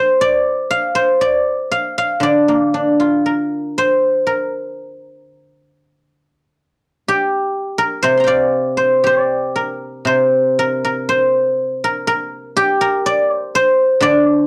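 A lone guzheng opens this short passage cut from a longer Chinese traditional piece, its plucked strings sounding silvery and ringing close up front. The mood is longing and contemplative, moving at a slow, rubato pulse of roughly 58-64 BPM in 2/4, so the beat breathes freely. Played with fingerpicks, the instrument's mellow tone spans from C3 up to C6. At 10.1 seconds the music moves into a new section, which carries on until the end at 14.5 seconds. The sound is dry and close, with the gritty character of a cassette tape recording.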